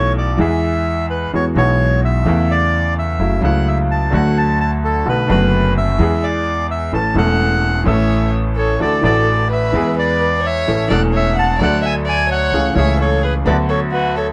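Close, detailed microphones and light reverb frame this elegant, passionate tango, a cut from a longer piece in A major at 129 BPM with a rubato feel. Up front, a reedy, airy bandoneon carries the melody over a brilliant, worn concert grand piano with deep bass and audible action noise, while a woody, thumpy pizzicato upright bass on gut strings anchors the low end. At 7.9 seconds a single bowed violin enters with a second line, its soft attack, vibrato and portamento adding expressive color until the close at 14.3 seconds.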